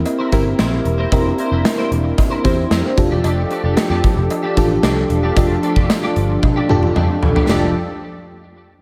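This 1980s-style pop excerpt feels glossy and nostalgic, moving at a straight, steady pace in four, with a dreamy mix soaked in a lush hall reverb. An FM electric piano layered with a soft pad carries the accompaniment with fast-attack, decaying tones treated with chorus. Behind it, a brassy, detuned sawtooth pad holds sustained chords with a soft attack, vibrato and a filter swell. Up front, a foam-muted, picked electric bass sounds dark and round, paired with a gated 80s drum kit of punchy kick, medium-tuned snare, bright cymbals, hi-hat, toms and tambourine in a bright stone room. A clean, compressed twelve-string electric guitar plays a riff through ensemble chorus and delay, while a very quiet, close and dry cowbell adds a metallic accent. A drum fill runs from 6.4 to 7.5 seconds, leading into a new section as the harmony has moved from C7 to F69.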